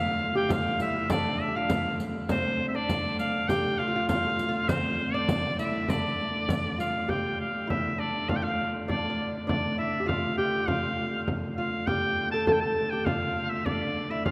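A long, wet church reverb, with a decay of 3.1 seconds, surrounds this mysterious, ancient-sounding medieval dance, heard as a section cut from a longer piece. It moves at 100 BPM in a straight 2/4 in D minor. Up front, a bright shawm carries the folk-style solo melody with vibrato and a vintage tone. Beneath it, a fingerpicked lute with gut strings, doubled courses and some octave-doubled strings plays a delicate second line, while a dark, nasal, woody hurdy-gurdy holds a drone with an airy bow from one player on the wheel-bowed, keyed instrument. A frame drum played with soft hands enters at 0.5 seconds, together with a riq whose bright jingles sit close but in the background until 7.1 seconds, where the piece moves into its second section and the frame drum carries on through to 14.3 seconds.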